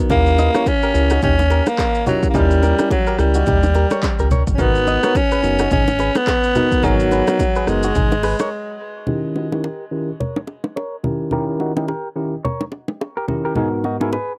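Sultry and mellow, this afrobeats cut from a longer piece moves at 107 BPM in 4/4 with a loose 16th-note swing, tuned slightly sharp to A4 = 444 Hz. A raspy, close-miked alto saxophone carries the melody up front with tape echo, over a bell-like tine electric piano that alternates between D#7b9 and G#m9 chords through a low-pass filter and cassette tape coloring. A round analog bass sits deep beneath, while a deep house drum kit of handclaps, hi-hat, kick drum, rim click and shaker adds a punchy, overdriven pulse with metallic hats. Close, dry congas and bongos and a twangy, direct-recorded clean electric guitar riff, also filtered and taped, run through the whole piece. Around the break at 8.5 s, the bass, drums and saxophone drop away, and a filter sweep from 9.1 s carries the piano, guitar and hand percussion on. The home cassette recording has a light reverb.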